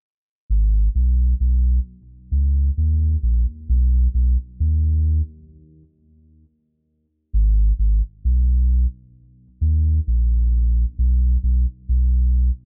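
A deep, spacious reggae excerpt at 66 BPM in 4/4 with a swung sixteenth-note feel, set in G# minor and tuned slightly low to A4 = 439 Hz. A lone warm sub bass carries the whole excerpt from 0.5 to 12.5 seconds, its round, sine-like tone sitting up front with a fast attack and sustained, mellow notes between G#1 and D#2. The sound is dry, and the music shifts into a second section at 7.3 seconds.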